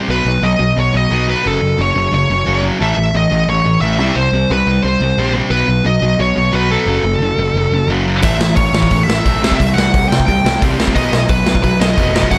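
A dark, sludgy distorted guitar riff opens this rebellious, energetic punk rock excerpt at 177 BPM, joined almost at once by a bright, up-front high-gain lead guitar melody with delay and a fuzz-laden picked electric bass, before a raw garage drum kit with a punchy kick and a gritty, saturated room sound arrives at 8.2 seconds alongside a very quiet, hollow-bodied overdriven semi-hollow guitar riff, all over chords cycling through B, F#m, A and C5 in light reverb.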